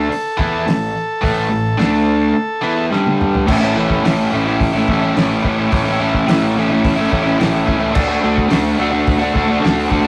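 A buzzy, up-front vintage combo organ states a brief melody over a bright, double-tracked overdriven guitar riff and a round fuzz bass sitting in the background, with a dry, thuddy cloth-damped drum kit of fat snare, tight kick and dark cymbals joining at 0.1 seconds, the organ dropping out at 2.9 seconds for a drum fill into a new section at 3.5 seconds, all of it a rowdy, swaggering garage rock cut in A mixolydian at 107 BPM with a rough, saturated small-room rehearsal sound.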